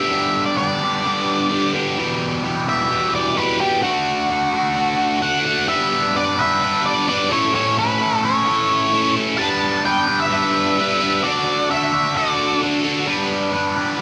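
An up-front, bright, double-tracked stack guitar drives this gritty rock excerpt at 130 BPM with a picked, overdriven riff touched by phaser, while a dark octave-fuzz lead guitar carries the picked, distorted melody until 12.6 seconds, both heard as a band playing live in one room with moderate large-studio reverb over changes that start and end on G.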